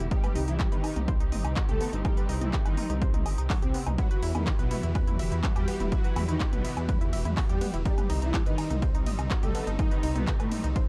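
Melodic techno at 124 BPM in 4/4, melancholic and dramatic, with a punchy, up-front electronic kick and a tape-warm techno kit of smooth hi-hats, handclaps, ride cymbal, toms and woodblock alongside a deep, rumbling detuned saw bass. A lush, wave-folded unison pluck spins arpeggios through tape echo, while a mellow supersaw carries the melody with ensemble chorus and dub echo, and a clear, bowed string section holds sustained chords in the background, the melodic parts breathing with sidechain pumping. The dry, dark production moves from Cm to Emadd9 at 4.0 seconds and back to Cm at 7.9 seconds in this brief cut from a longer piece.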